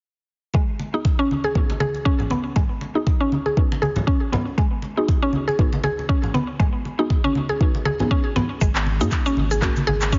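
Heavily compressed and radio-like with a dulled top end and light reverb, this driving, earthy afro house excerpt with a swung groove opens at 0.5 seconds on a deep, up-front kick, hard-handed congas in a small room, and a woody, bright synth pluck arpeggio carrying chorus, delay, sidechain pumping and a filter sweep. A soft, dark, detuned chord stab joins shortly after, pumping under the same chorus, delay and sweep over a G#m7 harmony. At 8.6 seconds the chord shifts to F#add9 as a round, up-front analog bass and a grainy egg shaker in the background arrive, followed by produced electronic handclaps.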